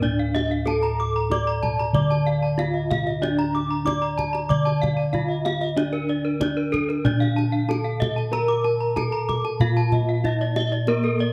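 Up front sit the bossed gongs, round, mellow and dark under padded beaters, holding the bass beneath a hypnotic, shimmering Balinese gamelan passage in D pelog at 94 BPM, cut from a longer piece. A bronze metallophone struck with horn mallets carries the melody with a boxy, small-room ring, while two brighter, airy metallophones spin arpeggios above it, one entering at 0.3 seconds, their paired tuning producing beating tones. A tight kendang, played with hard hands in a live room, adds percussion over the straight 4/4 pulse, and light reverb surrounds the ensemble.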